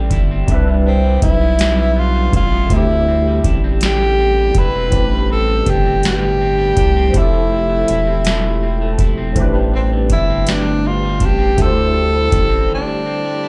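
Sultry and late-night, this slow six-eight R&B excerpt in A minor moves at 54 BPM, with a breathy, whispered tenor saxophone carrying the melody up front from 0.9 seconds, its light vibrato and soft attack touched by slapback echo. Beneath it, a barky, lightly overdriven tine electric piano with ensemble chorus plays the accompaniment, a twangy, slightly broken-up electric guitar picks a second line with subtle chorus, a rubbery square-wave bass bounces along dark and up front, and a booming analog drum machine offers a deep kick, crisp snare and metallic hats. Heard as a live gig through the venue's PA with club reverb, the chords drift from Cmaj7 through D9sus4, Am11 and Fmaj7, and a brief break opens at 12.7 seconds as the bass drops out, leaving the saxophone, piano and guitar to ring on.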